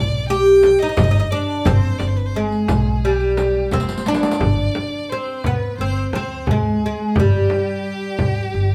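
A woody, fretless oud, plectrum-plucked and up front, carries the melody in this hypnotic, melancholic Arabic maqam ensemble excerpt in G hijaz at 87 BPM, joined by a clear, smoothly bowed violin with vibrato playing a second line and grounded by dark pizzicato upright bass, a deep, close and dry frame drum played with soft hands, a very quiet clay-shell darbuka, and a background riq with bright jingles that drops out at 4.4 s after a drum fill from 3.7 s, the band playing live together in a large studio room with moderate reverb.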